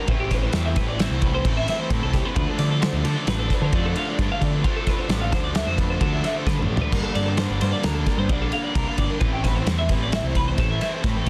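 A dense, heavily limited modern mix with little reverb frames this bright, intricate math rock and midwest emo excerpt in 5/4 at 132 BPM, moving through Amadd9, Dm7 and Gmadd9 chords. A twangy, clean twelve-string electric guitar plays high arpeggios, drenched in lush chorus and slapback echo, over a double-tracked, overdriven stack guitar riff and a warm, growling picked bass with its own overdrive. Up front, a loose indie drum kit with a punchy kick, dark cymbals and a pumping room sound carries the piece, with a drum fill at 6.5 seconds.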